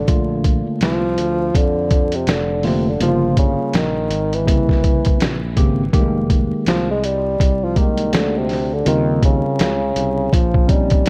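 A dark, smooth-topped bassoon with light vibrato and tape echo opens over a growly fretless electric bass, then a worn, slightly out-of-tune tine electric piano and an up-front, muffled, pitched-down lo-fi drum kit with a thumpy kick join in, setting a cool, nocturnal jazz-hop groove with swung sixteenths and vinyl crackle before the bassoon takes a classical-style solo from 5.9 seconds in this short cut from a longer hip hop piece.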